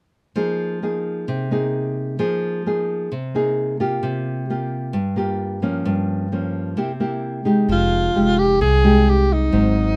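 Dry and close, this wistful, smooth bossa nova fragment opens with a thumb-plucked classical nylon-string guitar laying out extended minor, suspended and dominant chords alone until 7.7 seconds, when a forceful, punchy alto saxophone with jazz vibrato and a woody pizzicato upright bass step forward together.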